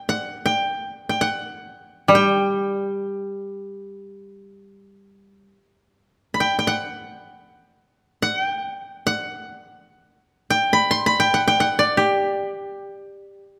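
Rhythmically free and unmetered, this calm, austere passage of Japanese traditional chamber music, cut from a longer piece, features a woody, fingerpicked koto melody ranging from G4 to C6, joined briefly from 2.1 to 5.5 seconds by a brighter second koto sounding a low G3 accompaniment, both dry and up front within a moderate recital-hall reverb, before the line slows from 9.0 seconds to its close at 13.6 seconds.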